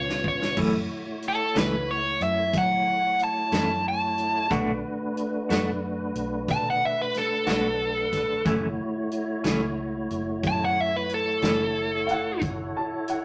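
Slow blues in F# minor, this smoky, brooding passage is cut from a longer piece and moves at 61 BPM in a straight 12/8. A drum fill opens the first 0.6 seconds on a swinging big-band kit with a punchy kick, medium-tuned snare, hi-hat and crash, heard naturally in a big room. A biting overdriven electric guitar, picked and up front, carries the melody. A dark, clean electric guitar, fingered and treated with tremolo, enters at 0.6 seconds as accompaniment. Beneath them, a tonewheel organ holds clear sustained chords with key click, chorus vibrato and a slow rotary speaker, while a vintage foam-muted fingered bass supplies a round, amped low end. The harmony moves from C#7 to F#m7, Bm7 and back to F#m7, and at 12.1 seconds a woody, polished upright piano adds a brief, short-sustained second line, all set in a wet studio reverb.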